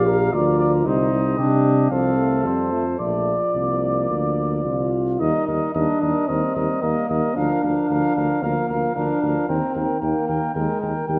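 A warm, up-front tuba anchors this noble, stately fragment of classical brass quintet writing in 4/4, with a distant French horn carrying light vibrato in the accompaniment and a trombone with a soft attack sitting in the background. Above them, a mellow, punchy trumpet leads the melody while a clear, vintage-toned flugelhorn adds a second line, all five playing throughout. The harmony moves from Bb and Cm toward Eb as a new section arrives at 5.2 seconds, and a recital hall's reverb gives the ensemble a roomy glow.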